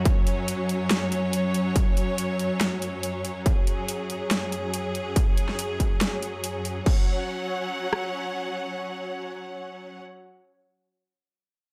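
A distorted kick drum with a rim click drives this heavy, aggressive slice of wobble dubstep, sitting up front with a tape-warm, layered electronic weight and a touch of small-room reverb. A second drum layer adds a huge snare, bright hi-hats and crash cymbal in a swung, half-time feel, entering at 0.1 seconds alongside the kick. Alongside them, a bowed studio string section holds sustained chords across the whole passage, its vibrato-laden ensemble tone biting and lush while sidechain pumping makes it breathe against the beat. The arrangement shifts into a new section at 6.9 seconds, after which the snare, hats and cymbal drop out, leaving the kick and rim click to carry on a little longer before the strings ring out to the end. Light reverb binds the parts into a dense, intense mix cut from a longer piece.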